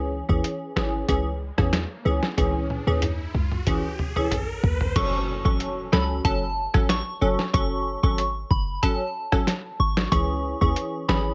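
A straight 4/4 dancehall groove at 93 BPM, tough and bouncy, rides on a lo-fi sampler-style kit that sounds compressed, pitched down and tape-warm, with a thumpy kick, snare, rim clicks, hi-hat, toms and crash, while a punchy, tight 808-style bass with a sine body and noise layer anchors the C#m to F#m harmony. Crisp, detuned wavetable chord stabs sit up front, and an electronic riser builds from 1.8 s, joined by a drum fill at 2.4 s, before an impact lands at 5.0 s. At that point a soft, pure FM synth bell carries a high melody through chorus, phaser and digital delay in a dry mix, in what sounds like a section cut from a longer track.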